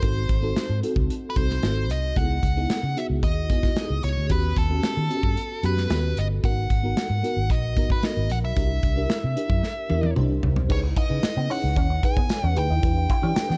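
A nasal, overdriven lead guitar with a parked wah carries the melody in this glossy, urban slice of polished 1980s jazz-funk pop at 112 BPM, set over a sparkling, bell-like FM electric piano with ensemble chorus and jazzy chords such as G#7b9, D#7alt and C9. A round, foam-muted fingered bass sits up front beside a punchy, airy studio drum kit, which plays a fill at 9.6 seconds. At 10.7 seconds a clean, background envelope-filter guitar riff with lush chorus joins, followed by a very quiet, jingly tambourine at 11.2 seconds, all within a dark studio reverb.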